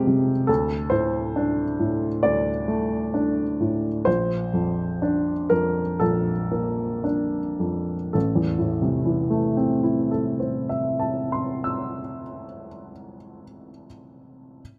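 Closely miked and intimate, with a light reverb, this short cut from a longer piece features a solo upright piano heard up front. Its woody, natural tone carries short sustain and audible action noise, spanning from deep bass to high treble. The reflective, wistful neoclassical minimalist playing moves in a slow, rubato 4/4, easing its pace over the first 8.1 seconds before settling into a new passage from 8.1 to 12.4 seconds, with the piano sounding until 14.6 seconds.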